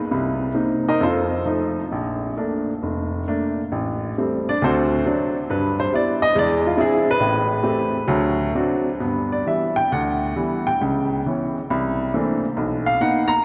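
Solo jazz in a relaxed, warm mood, this short cut from a longer piece features a baby grand piano alone from 0.1 s to 13.4 s, its warm, natural tone sitting up front as it swings loosely with rubato through chords such as Cm7, F7 and Bbmaj7, then Am7, D7 and G6, before closing on C#m7, C13 and Bmaj7, the whole bathed in a long, wet cathedral reverb that suggests a church or concert hall.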